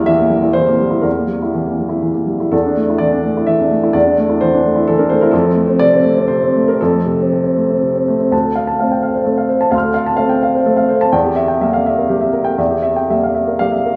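Set in a wet recital hall, heard from further back in the room, this short fragment of a longer neoclassical minimalist piano piece has a reflective, wistful air. A solo upright piano with a woody, vintage tone and short sustain moves in a rubato triple metre across a range from D2 to F6. It passes through E diminished, A suspended over E and F before turning at 8.3 seconds to D minor seventh and back to E diminished at 11.1 seconds.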